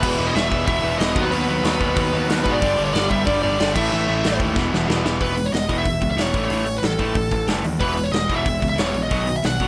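Rowdy and energetic, this short cut from a longer punk rock track charges ahead in a straight 4/4 feel. Up front, a dark, bluesy overdriven lead guitar carries the melody over a kit with bright cymbals, a medium-tuned snare and a tight kick, which sounds natural and roomy. Behind them, a crunchy overdriven guitar and a picked distorted electric guitar grind out riffs, joined until 5.2 seconds by a double-tracked, compressed fuzz guitar. A growling picked bass, overdriven and recorded both direct and through an amp, anchors the low end. A drum fill from 4.6 seconds leads into the second section, where the fuzz guitar drops out and the chords move between A, E and B. The mix is dry, with little reverb.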